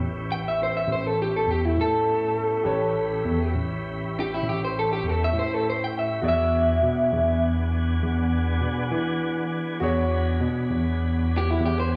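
Swaggering and gritty, this slow 12/8 blues in A mixolydian at 67 BPM features a slightly broken-up, lo-fi electric guitar solo from 0.3 seconds, played up front over a clean tine electric piano bass line, smooth organ chords with chorus vibrato and slow rotary speaker, and an intimate grand piano with audible action noise in the background, moving from A9 to E9 at 6.2 seconds in a live room with moderate studio reverb.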